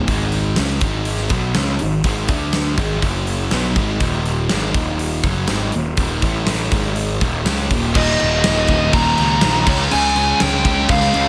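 A straight 4/4 hard rock groove at 122 BPM drives this energetic, anthemic clip, with a big, up-front acoustic drum kit of punchy kick, fat snare, hi-hat and crash in a bright stone room joining at 0.1 seconds over a fuzzy, overdriven picked electric bass. Two sludgy overdriven guitars, one dark and one warm, play riffs in the background over power chords such as Ab5, D5 and Eb5. At 7.9 seconds a scooped, double-tracked high-gain guitar adds a bright riff, and at 8.0 seconds a dark, smooth overdriven lead guitar takes the melody high above the band, all set in light reverb and studio ambience.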